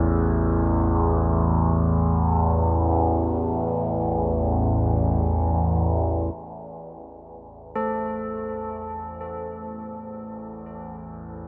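Drenched in a huge, cavernous reverb, this short cut from a longer dark ambient drone piece unfolds in free time with an ominous mood: an up-front, nasal drone of sawtooth and sine tones with moving overtones, chorus and phaser sustains throughout; a very quiet bronze singing bowl struck with a felt mallet rings with slow beating until about 6.4 seconds; and dark carillon bells with an iron clapper and a minor-third overtone enter at 7.8 seconds, playing up-front arpeggios through a delay.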